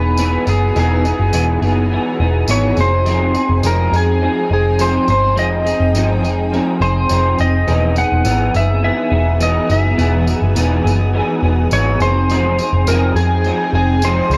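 A round, foam-muted vintage electric bass with transformer saturation sits up front in this sunny, laid-back indie and bedroom pop excerpt at 104 BPM, beneath a twangy, slightly broken-up guitar melody dressed in lush chorus and slapback echo, a bright picked guitar through a small old amp carrying analog chorus and warbly pitch drift, a cloudy, detuned granular pad in the background, and a jingly tambourine from 0.2 s, as the chords move between Emaj7 and Fm7 under a worn, cassette-tape character and light digital ambience.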